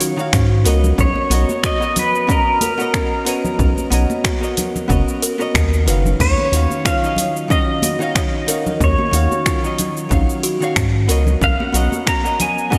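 A lightly swung 92 BPM groove of a deep house kit of cabasa, crash, finger snaps and hi-hat, joined at 0.3 s by an overdriven, punchy electronic kick and an up-front, round analog bass and at 0.8 s by bright congas in the background, carries this smooth, wistful sunset chillout piece in Eb minor, where a twangy pedal steel guitar sings the melody with slide and volume swells over a dark, clean hollow-body jazz guitar and a woody, buzzing kalimba's arpeggios, all drifting between Ebm9 and Bmaj9 in a dreamy, reverb-soaked mix.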